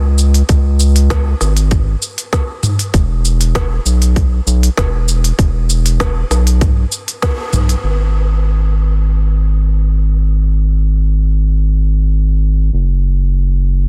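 Dry and densely limited, this earthy organic downtempo cut at 98 BPM puts a round, deep analog bass with a filter pluck and sidechain pumping up front, joined at 0.2 s by a tape-tinged electronic kit of woody snare, crisp hi-hat, shaker and toms over a tight, forward electronic kick, with a band accent at 7.2 s before the drums fall away at 7.8 s and the mellow bass carries on alone.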